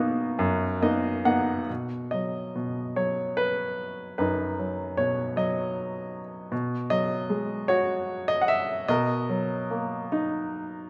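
A clear, polished baby grand piano opens this brief, peaceful classical fragment alone and up front, adding a short fill from 0.4 to 1.7 seconds before settling into a lyrical, rubato passage in 6/8, its short-sustained notes softened by a moderate scoring-stage reverb as the harmony moves gently from Bmaj7 through B and B69 back to Bmaj7.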